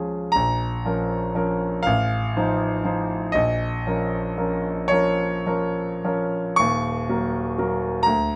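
Romantic classical nocturne for solo piano in B-flat minor, unfolding in a slow, rubato 6/8 at around 34-42 beats per minute on the dotted quarter, its mood tender and serene. A clear, polished grand piano sits up front and present in light reverb, ranging from Eb1 up to Db6 as the harmony moves from Bbm through F7/A back to Bbm and on to Ebm7 at 6.6 seconds. This short passage is cut from a longer piece, and the tuning sits slightly high at A4 = 441 Hz.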